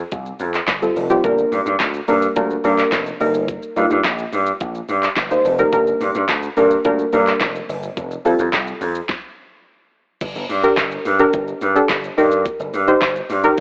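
Dance-pop in G minor at 107 BPM, this cut from a longer piece carries a bittersweet yet confident mood in a straight 4/4. A deep, mellow chord stab opens the piece from the first moment, its soft, full-bodied tone shaded dark with chorus and a tape-worn grain, moving through Fadd9, Gm and Eb/G. A vintage slap bass joins at 0.1 seconds, electric, amped and punchy, with sidechain pumping that gives it a breathing push under the chords. The pop drum kit enters at the same moment, electronic and layered, with a knocking kick, fat snare, crisp hats, handclaps, shaker and crash cymbal, all roughened by the same cassette character. A stop from 9.1 to 10.2 seconds breaks the groove before a new section returns to Gm and Eb/G. The whole mix sits in a digital ambience with a lo-fi, telephone-like home-cassette coloring, slightly flat of standard pitch.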